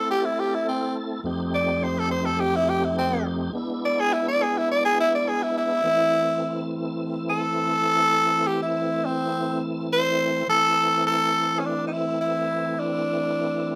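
A straight 4/4 blues groove carries this brooding, soulful excerpt, where a raspy, growling tenor saxophone takes a jazz-style solo up front until 10.5 seconds over a full, lightly overdriven tonewheel organ with chorus vibrato and slow rotary speaker, moving through Am, F7 and E7 in moderate studio reverb with the feel of a band playing live in one room.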